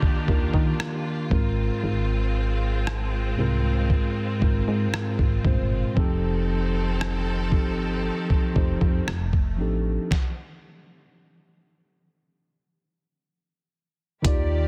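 A mellow tine electric piano, distant lush bowed strings and a gritty, up-front sampler-style drum kit with a thumpy kick and a softly clipped snare open this dreamy, tender slow contemporary R&B fragment, joined at 0.3 seconds by a punchy, round FM bass, with lush chords drifting through the digital ambience of a dense, heavily limited modern master before a stop arrives at 10.1 seconds.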